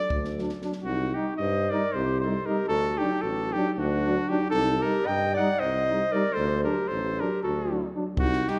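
A clear, close-miked flugelhorn and a dark, smooth-topped clarinet open this short, fiery and bittersweet Balkan brass band passage together, the flugelhorn carrying the melody up front while the clarinet sounds a second line beneath it. Almost at once a tuba with light vibrato and a soft attack anchors the bass, and a compact acoustic cocktail kit adds a punchy kick and a high-tuned snare in a brief burst lasting until 0.8 s. From 0.4 s a distant, roomy trombone and a shadowy euphonium fill in quiet accompaniment in the background. The tune moves in a straight 7/8 over chords swinging between D and C minor, and the kit returns for a short moment at 8.2 s before the fragment ends. A lush scoring-stage reverb gives the whole band the glow of a church or concert hall, and the passage feels cut from a longer piece.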